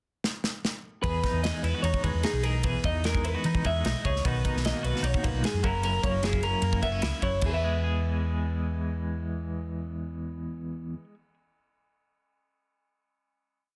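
Wistful and bright, this short math rock and midwest emo piece moves at 150 BPM in a straight 4/4, set in E lydian. A drum fill on the modern studio kit opens the pickup bar at 0.2 seconds, the airy, polished kit sitting up front with a punchy kick, medium-tuned snare, crash and ride, and breaking the groove rather than holding a steady beat. At 1.0 seconds the band enters: a clean, compressed twelve-string electric guitar up front rolls fingerstyle arpeggios with tremolo, while an electric guitar through a small old amp picks a twangy, slightly broken-up ostinato higher up, dressed in slapback echo and plate reverb. Beneath them, a dark, round hollow-body short-scale bass plays a syncopated riff as the chords move from Emaj7 to Bmaj7 and F#7. The piece settles onto a final E chord at 7.4 seconds, and the twelve-string is the last to fade, ringing until 11.3 seconds. Light reverb surrounds a dense, heavily limited modern master.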